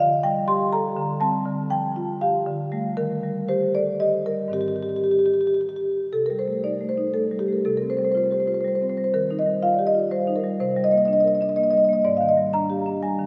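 Contemporary classical music for solo marimba, this short passage cut from a longer piece has a reflective, flowing mood, moving in a loose triple metre with a rubato feel. The marimba, played with medium mallets on rosewood bars, sounds woody and vintage, with a slightly band-limited tone that sits up front. Its range stretches from the low Ab2 up to C6, giving the single instrument a full, resonant span. The harmony drifts through suspended and extended colours such as Dsus4, Abmaj7 and Cm9, with a second section beginning at 6.1 seconds and settling on Ab5 near the close at 12.1 seconds. A lush church reverb surrounds the playing, letting each stroke bloom into a long, airy tail.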